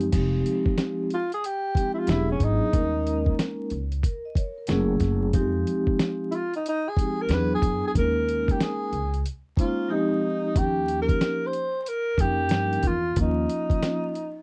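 A breathy tenor saxophone carries the melody in this smoky, mellow jazz-hop excerpt, entering at 1.1 seconds with a whispered, subtone voice, soft attacks, scooped notes and gentle vibrato that sound intimate yet distant. Beneath it, a vibraphone played with soft mallets rings out airy, metallic chords with a slow motor vibrato, cycling through Fm9, E9, Eb7sus4 and Gbm9 harmonies. A pizzicato upright bass adds a woody, growly low end, while a compressed, sampler-style drum kit with a thumpy kick, medium-tuned snare, hi-hat and crash cymbal sits up front with gritty, tape-warm character. The groove moves at 92 BPM in 4/4 with a lazy 16th-note swing, and a brief silent gap from 9.9 to 10.6 seconds leads into a new section resting on Eb9. The dry, close 1970s-style sound is dusted with vinyl crackle, giving the piece a hip hop feel.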